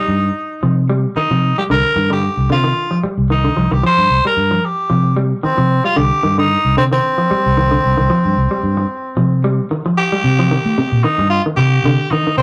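A rough rehearsal-room recording with light reverb and a warmly saturated edge captures this intense, defiant afrobeat passage, cut from a longer piece, in C minor at 112 BPM with a lightly swung sixteenth-note feel over a C minor chord. A raspy, gritty tenor saxophone with a bright tone and light vibrato carries the solo melody up front, while a clean, hollow-bodied semi-hollow electric guitar plays fingered arpeggios bathed in spring reverb. A dark, round fingered electric bass sits prominently beneath them from 0.1 seconds, and the music moves into a new section at 10.2 seconds.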